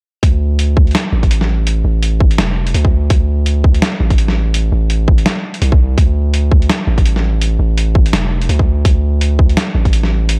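Dark and heavy, this short cut of half-time drum and bass moves at 167 BPM in D minor, with a swung sixteenth feel and a dry, dark production. A long, deep 808-style bass with a sine tone and fast attack holds the low end from 0.2 to 10.4 seconds, beside a gritty, pitched-down sampler-style kit of hi-hat and medium-tuned snare that sounds tape-warm and compressed, as if re-recorded in a small room. Also up front is an overdriven, hard-clipped electronic kick, which drops out at 9.9 seconds while the bass and kit carry on.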